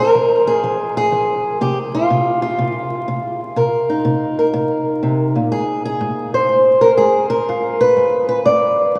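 Swung eighth notes at 123 BPM in 4/4 give this brief acoustic country blues fragment a loping, unhurried gait, cut from a longer piece and lasting just nine seconds. A lone fingerpicked guitar, old and ladder-braced, carries everything from 0.0 to 9.0 seconds, its dark, boxy, woody voice and aged strings sitting up front across a span from G2 to D5. The mood is brooding and mournful, moving in C minor from Fm through Cm7, pausing on a stretch with chords dropped at 5.5 seconds, then settling onto G7 at 7.5 seconds. A soaking cathedral reverb with a 6.5-second tail places the playing in a vast, echoing space, and a layer of vinyl crackle lends the sound a worn, dusty patina.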